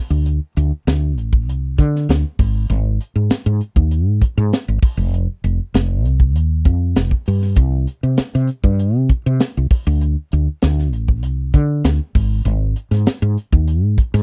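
A woody fretless electric bass opens the excerpt at 0.1 seconds, dark, round and punchy, joined moments later by a tight funk drum kit with a high-tuned snare, hi-hat and tight kick. This intense, driving electric jazz fusion moves at 98 BPM in a straight 4/4, both parts sitting up front. The dry, close 1970s-style studio sound carries little reverb, with the drums heard in a small, natural room.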